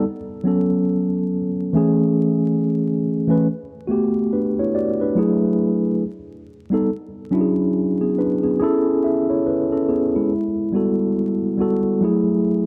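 This hip hop excerpt drifts at a relaxed 70 BPM in A major, with a cosy, nostalgic mood and a lazy sixteenth-note swing. A mellow tine electric piano plays alone for the full 12.7 seconds. Its clean, up-front tone is colored by cassette tape and moves through lush chords such as Amaj7, Gmaj9, F#m9 and a tense Baug7 resolving to E13. The dark, warm production adds vinyl crackle and a moderate plate reverb that lingers for about 2.6 seconds.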